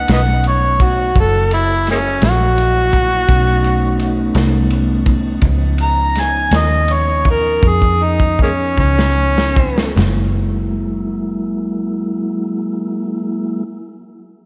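A big arena sound with lush hall reverb frames this laid-back, soulful slow blues in 12/8 at 50-56 BPM in F# mixolydian, where an overdriven, gritty harmonica with slapback echo, light vibrato, tongue slaps and scooped notes takes a jazz-style solo up front until 9.9 s as the tempo slows from 4.0 s, over soft, flute-like tonewheel organ chords turning through a slow rotary speaker, a round, punchy foam-muted electric bass, and a crunchy, saturated breakbeat kit with dark cymbals that plays a fill from 7.6 s as the harmony arrives on F#9, after which the organ and bass carry on alone.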